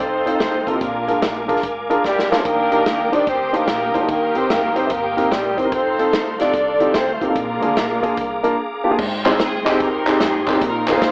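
A breathy tenor saxophone with scooped notes and light vibrato carries the melody from the start, over a veiled, muted string section bowing its own melody in the distance, while a smooth tonewheel organ holds sustained chords with key click and chorus vibrato, and a woody upright bass sits pizzicato in the background. At 0.3 seconds a warm, up-front grand piano and a punchy acoustic drum kit with bright cymbals join in, and the drums soon play a short fill. This is reverent, soulful uptempo gospel in a swung 4/4, cut from a longer piece, with the harmony moving through seventh chords before shifting to a new section near the close. The saxophone drops out at 8.6 seconds, and from 9.3 seconds a hollow, distant group handclap enters, as if from a large room. A light reverb and an AM-radio sound color the whole recording.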